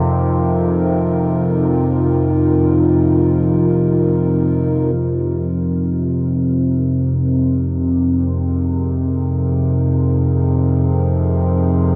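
Drenched in a huge, cavernous reverb with a dark production, this desolate, free-time dark ambient drone in F minor sets a nasal, evolving sawtooth-and-pulse analog drone with chorus up front, beneath a deep, detuned square-and-triangle analog pad with a sub octave and chorus that holds sustained chords, moving from an open F7 to Fm7 at 5.0 seconds and fading in from there to 12.0 seconds.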